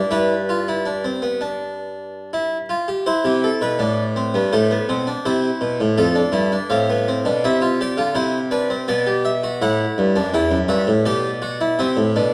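Joyful and lively, this 12.3-second cut from a baroque-style three-part classical fugue in C major moves at 82 BPM in a straight 4/4, with a solo Flemish-style harpsichord tuned to A4 = 436 Hz, plucked and full-bodied on two sets of strings, sitting up front across a range from E2 to G5 in a dark, warm production with wet recital-hall reverb, its harmony passing from G through C, A minor, F and E minor before arriving back on C at 11.8 seconds.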